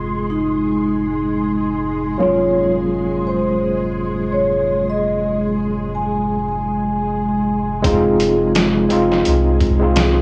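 A dark, ringing vibraphone with soft mallets carries the melody from 0.3 seconds through tape echo in this cinematic, hypnotic trip hop passage at 85 BPM in F phrygian, set over a barky, overdriven tine electric piano with fast tremolo and harmonic tremolo, mellow sawtooth string-machine cellos with ensemble chorus and 12-bit grit, a deep, round dub sub bass, and a faint, flickering granular texture, until a muffled, compressed sampler-style drum kit with a thumpy kick arrives at 7.8 seconds in a small, lightly reverberant room.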